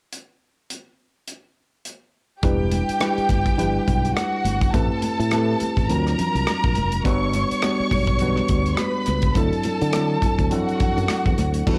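A swung sixteenth-note groove at 104 BPM in 4/4 opens this smooth, silky 1970s-style soul excerpt, with the acoustic drum kit playing alone up front until 2.4 s: punchy kick, bright cymbals, hi-hat, rim click and a crash. At 2.4 s the band enters over Em9, Am9, D7alt, Gmaj7 and D9 chords. A bright, growly fingered electric bass, a worn, slightly out-of-tune tine electric piano lightly overdriven through a combo amp, and very quiet high-tuned congas join a lush, expressive violin section with vibrato that carries a silky second line. Everything is set in a small room with light reverb, and the drums, violins and piano carry the character of a home cassette tape recording.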